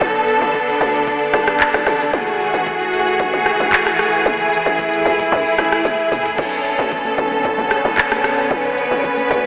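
A dark, woody string section bowing lush sul tasto chords with vibrato sits up front in this hypnotic, late-night amapiano excerpt in B minor at 113 BPM, moving from Bm7 through F#m9 to Bm9 over a hollow, bouncy log drum bass and a smooth, produced electronic R&B kit with soft kick, handclaps, rim clicks, shaker and toms that plays a fill at 5.9 s, before damped, high-tuned congas enter softly in the background at 6.4 s, all soaked in a dreamy, huge reverb with a telephone-like tone.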